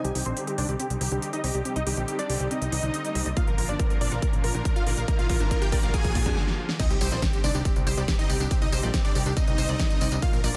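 This uplifting trance excerpt opens in a build-up at 140 BPM in C minor. Bright, detuned supersaw chords carry the melody through a sweeping low-pass filter, sidechain pumping and tape echo, over a slow-attack filtered supersaw swell that holds sustained chords in the background. Underneath, a plucky analog bass with a funky sawtooth and square-wave bite pumps along, while a big-room dance kit brings a huge snare, crisp hats, tambourine and crash cymbal, and a very quiet riser and sub drop sits beneath. A lush unison pluck plays arpeggios with ring modulation and a noise layer, set back in the mix, its own filter sweeping through the build. The punchy, up-front electronic kick arrives at 3.4 seconds with a drum fill, and a short break at 6.4 seconds leads into the drop at 6.8 seconds, marked by an impact, as the harmony moves from Cmadd9 to Bb and back to Cmadd9, all driving and soaring inside a dense, heavily limited modern master with digital ambience.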